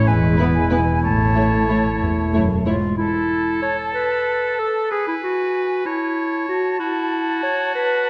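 Quirky and magical, this playful, whimsical film cue in A major moves at 63 BPM in a straight 6/8. It opens with muted, veiled strings: a distant violin section carries the melody over a very quiet chamber violin line, faint violas, lush cellos and close double basses, alongside a punchy French horn chord that ends at 2.6 s. The strings fall away by 3.0 s, while a bright, present oboe, an up-front clarinet and a pure, expressive flute carry their lines on through 8.1 s in a dark, wet scoring-stage reverb.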